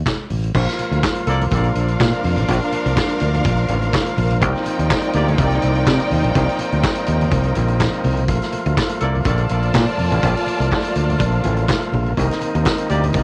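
A fingered electric bass sits up front with tube saturation, driving this joyful, danceable disco excerpt over a dark-cymbaled vintage drum kit of kick, snare, hi-hat, crash and handclaps, gritty with cassette tape, while low-tuned congas stay very quiet underneath. An overdriven tonewheel organ with key click and fast rotary speaker holds thick sustained chords from 0.5 seconds, moving through Bb, Cm9 and Bbmaj7, and a lush, biting symphonic string section carries a second line from 1.5 seconds. A clear horn section adds brief stabs colored by tube saturation and analog delay, the last at 12.9 seconds, and the home cassette recording is wrapped in studio reverb.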